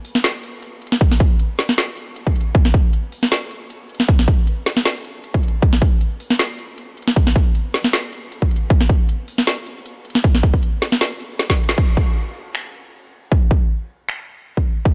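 Dreamy and bittersweet, this future bass excerpt moves at 156 BPM in 4/4 with a half-time feel and a light swing on the sixteenths. A trap kit of finger snaps, crisp hats and a woody snare sits up front from the start, joined at 1.0 seconds by a punchy, overdriven, layered electronic kick that carries the most weight in the mix, both parts touched with studio reverb in an otherwise dry sound. The opening stretch is a drop that closes with a drum fill at 11.4 seconds and a band accent at 11.7, after which a new section begins at 11.8 and runs to the end.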